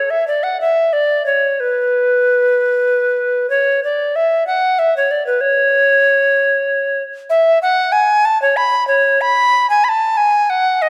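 A close, up-front recording sets a lone tenor recorder inside the moderate reverb of a scoring stage, its 1.8-second decay giving each phrase a soft halo. This classical, baroque-style fantasia for unaccompanied recorder flows in 6/8 with a free, rubato feel, and its mood is flowing and radiant. The tenor recorder plays solo from 0.0 to 10.9 seconds, moving between B4 and B5 with an airy, woody straight tone. Tongued notes bring a distinct chiff at their starts, which the close miking makes plain. The passage is cut from a longer piece and stays within a single section throughout.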